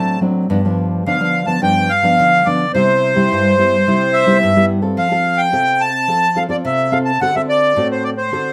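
Set in a moderate studio reverb, this sunny, festive samba fragment at 108 BPM places a reedy, close-miked accordion up front with its slow beating tone carrying the melody over a warm, thumb-plucked classical nylon-string guitar accompaniment, moving from C major into F major at 5.0 seconds.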